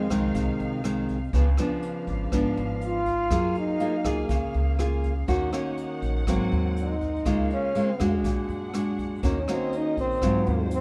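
Bossa nova in Db major at 122 BPM with a sunny, sophisticated mood, this short cut from a longer piece features a breathy, intimate trombone solo with light vibrato carrying the melody up front over fingerpicked nylon-string guitar, a woody, thumpy pizzicato upright bass, a brushed drum kit with boomy kick, hi-hat and rim click, and a distant, veiled con sordino string section holding lush bowed chords, all in light reverb as the harmony moves through rich jazz chords from Fm7 to Ab13.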